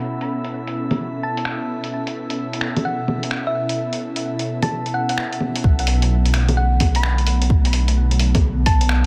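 Hazy and low-passed, this future garage cut at 129 BPM in a swung 4/4 and B minor feels wistful and melancholic: an ethereal pad with vintage sampler grit and sidechain pumping holds sustained chords beside a glassy texture of drifting overtones in the background, a muffled, compressed lo-fi kit of bongos, finger snaps and hi-hat plays along, and a round, tine-like thumb-piano pluck carries the melody through chorus and delay, until, after a filter sweep, a tape-warm electronic kick and a deep, rumbling detuned saw bass sitting up front arrive at 5.6 seconds.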